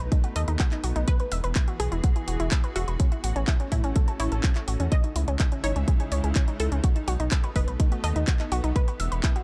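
A dark, warm digital ambience frames this hopeful, expansive progressive house excerpt, which moves at 125 BPM in a straight 4/4 in E major. A house kit of handclaps and hi-hats, whose hats carry sidechain pumping, opens the excerpt, and a punchy, tape-warm electronic kick sits up front from 0.1 seconds, both re-recorded in a small room. Underneath, a round, deep analog bass blending sawtooth, sine and triangle tones holds sustained, mellow low notes until 9.2 seconds, pumping with the sidechain. A bright, morphing wavetable pad with slow attack and long release spreads sustained chords through ensemble chorus, built-in reverb and tremolo. A nasal, wave-folded analog pluck with a filter sweep plays arpeggios through chorus and digital delay, while a lush, detuned unison pluck carries the melody in the background, also trailing digital delay. The harmony cycles through B7, Eadd9, A6 and C#madd9 before returning to B7 and Eadd9.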